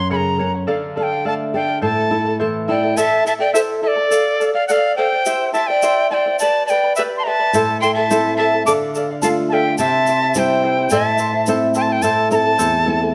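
Wistful and melancholic, this Andean folk excerpt in A minor moves at 106 BPM in a straight 2/4, with an airy, reedy cane quena carrying the vibrato-laden melody up front over shimmering fingerpicked charango and a fresh-stringed classical nylon-string guitar that drops out between 3.0 and 7.5 seconds, while a breathy bamboo pan flute with chiff adds a second line from 2.7 seconds and a grainy, close tube shaker sits low beneath, the ensemble placed in a moderate recital-hall reverb.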